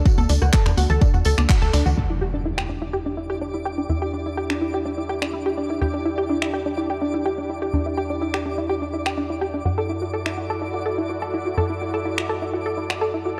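Progressive house at 125 BPM in E minor, this short excerpt from a longer piece feels expansive and bittersweet, moving from a D chord to Em7 at 2.0 seconds and on to Dadd9/F# at 9.7 seconds. A tight, nasal sequencer bass with tube saturation and sidechain pumping drives the whole span from the front of the mix, alongside a round, detuned analog pluck playing arpeggios through analog chorus and delay, its filter sweeping from 2.0 seconds onward. The opening stretch carries a punchy, tape-tinged electronic kick, a jingly tambourine in the background, and electronic congas with a rim click, while an overdriven deep house kit of finger snaps, handclaps and hi-hat keeps going until 13.0 seconds. At 2.0 seconds an electronic impact marks the shift into the second section, and a lush, full-bodied supersaw pad with slow attack, vintage 12-bit sampler grit and a sweeping low-pass filter rises in shortly after. 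Above it all, a twinkling granular texture with an octave-up shimmer and its own reverb sparkles high in the register, rounding out a dark production with light reverb.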